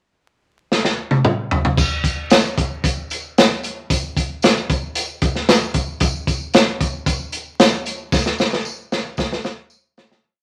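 A crunchy breakbeat drum kit opens with a fill at 0.7 s, its gritty, saturated sound sitting up front with dark cymbals, a tight kick and a medium-tuned snare carrying a backbeat soul groove in 4/4 at 114 BPM. A jingly, bright tambourine enters in the background at 1.8 s, striking every beat, as this short, joyful soul piece unfolds through vinyl crackle and a moderate club reverb. A second drum fill arrives at 8.1 s while the whole piece fades out.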